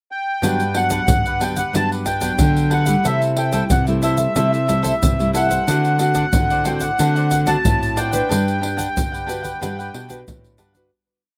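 Joyful and lively, this short samba and choro piece opens with a reedy, sweet accordion carrying a motif-based melody of song-like phrases, its light tremolo tuning lending a vintage, band-limited color up front. At 0.4 seconds the band enters: a cavaquinho strums crisp sixteenths, one nylon-string guitar plays thumb bass and syncopated plucked chords, and a second classical nylon-string guitar fingerpicks a full-bodied samba bass figure. Egg shaker, pandeiro and a deep surdo sit close and dry in the foreground. Slapback echo touches the accordion, cavaquinho and accompanying guitar, while the harmony moves from Gmaj7 through C6 and D7 before returning to Gmaj7. Recorded outdoors with little reverb, the performance fades out from 8.3 seconds to its close.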